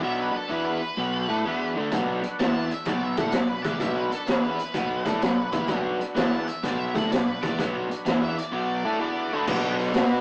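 A swung, heavy and brooding blues-rock and southern-rock fragment, where a double-tracked crunchy rhythm guitar drives the riff up front, a growly fuzz bass and a gritty tonewheel organ with slow rotary swirl and key click sit behind, a dark wah-and-fuzz lead guitar carries the melody, the organ adds a brief fill at 4.7 s, and a raw garage drum kit with a boomy kick and a saturated, rolled-off top crashes in at 1.9 s, all in a rough, stone-walled rehearsal-room sound.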